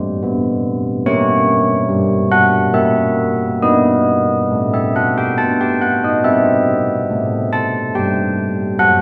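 An uneven triple-time pulse carries this solemn, wintry classical fragment cut from a longer church-bell tune, where a solo carillon sits up front with a bronze, mellow ring and a minor-third overtone softened by a padded clapper, its chords moving from F#dim through A#dim7 to B at 3.6 seconds and C at 6.3 seconds, all blooming into a lingering concert-hall reverb.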